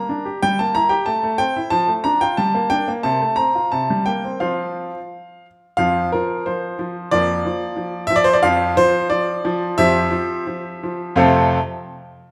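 A clear, up-front grand piano rings in a wet recital hall as it plays this cheerful, elegant classical-period sonatina excerpt alone in F major, moving in a straight 2/4 at around 83-92 BPM through a passage of chords like Am, Dm/F and Gm before slowing down from 7.8 to 11.2 seconds and settling on F.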